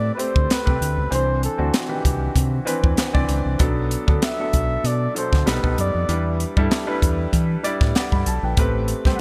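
Bittersweet and slick, this polished 1980s jazz-funk pop fragment moves at 97 BPM in 4/4 with a light swing on the sixteenths, centred in A dorian. A warm flugelhorn carries the solo melody in a smooth, jazz-style voice, touched with delay. Beneath it, a clear concert grand piano sits up front with a subtle chorus, its long sustain, deep bass and audible action noise giving the accompaniment an intimate presence. A fingered electric bass adds a dark, round, punchy low end, and a crisp fusion drum kit joins at 0.2 s with hi-hat, a punchy kick and a high-tuned snare in an airy studio room. The harmony drifts from Am9 through Cmaj9, Bm7 and a tense B7alt to Em7 before settling back on Am9 at 8.6 s, all framed by light reverb and bright digital production in a passage cut from a longer piece.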